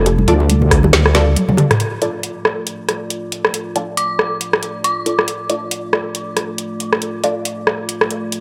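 Deep dubstep in D minor at 138 BPM with a swung half-time feel, dark and meditative, resting on a single D minor chord in a hall reverb. A moody, wave-folded ambient pad sustains throughout while a saturated, sawtooth wobble bass sits up front until 1.4 s, and an up-front garage kit with woody snare, metallic hats, rim clicks and toms joins bright, dry bongos and congas sitting in the background, plus a brief knocking electronic kick, before a drum fill from 1.4 s and a band accent at 1.7 s. Muted, phased dub chord stabs with dub echo recur, and an eerie, inharmonic FM bell with tremolo rings on a high D at 4.0 s.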